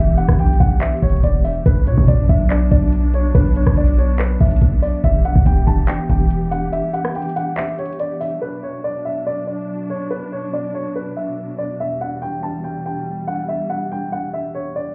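Heard muffled through a wall with club reverb, this eerie, melancholic half-time trap excerpt sets a dark, boxy baby grand piano melody with audible action noise and digital delay over soft, sul tasto studio strings holding sustained chords, while a deep, boomy 808-style bass and an up-front electronic trap kit with a knocking kick, bright hats, handclaps and rim clicks sit underneath until the bass stops at 6.7 seconds and the drums at 8.3 seconds, leaving piano and strings alone.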